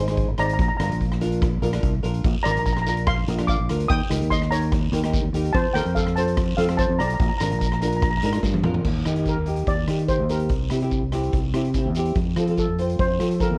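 A bouncy, sunny calypso excerpt in Eb major at 145 BPM opens with a mellow, shimmering steel pan melody carrying slapback echo, over bright fingerpicked flamenco guitar with finger squeak, a round, punchy fingered electric bass up front, and a boomy, airy street-band drum kit with dark cymbals, joined at 2.2 seconds by a raspy guiro in the background, until a drum fill at 8.4 seconds leads into a steel pan solo over Ebmaj7, C and F, all heard through light reverb and the warbly pitch drift of worn cassette tape.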